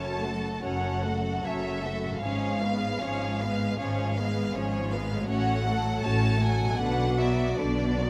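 A lush, smooth cello section carries the bass beneath a focused violin melody and an intense second violin line in this yearning, solemn slow romantic orchestral passage, while bowed violas add close accompaniment, an expressive double bass section deepens the low end, and a very quiet, ringing harp plays arpeggios, all shaped with rubato, captured in close detail within a moderate concert hall reverb, and cut from a longer piece.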